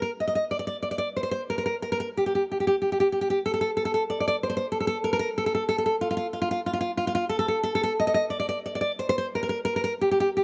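A fingerpicked nylon-string guitar with fresh strings and audible finger squeak sits up front, playing alone between F4 and Eb5 in an intimate, melancholic romantic classical piece in 6/8 at a rubato 61 BPM (dotted quarters), tuned to A4 = 441 Hz and bathed in a moderate plate reverb across this 10.4-second fragment cut from a longer piece.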